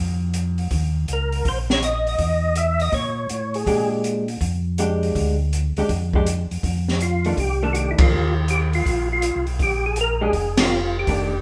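Greasy and bluesy, this swinging soul jazz organ trio excerpt sets a round, mellow tonewheel organ bass line with chorus vibrato and slow rotary speaker under an open acoustic drum kit with dark cymbals, a high-tuned snare and a boomy kick, while a percussive organ with third harmonic percussion carries the melody from 1.1 seconds and a compressed, picked hollow-body electric guitar adds clean accompaniment from 3.7 seconds, all captured live in a stone room with band accents landing at 7.9 and 10.5 seconds.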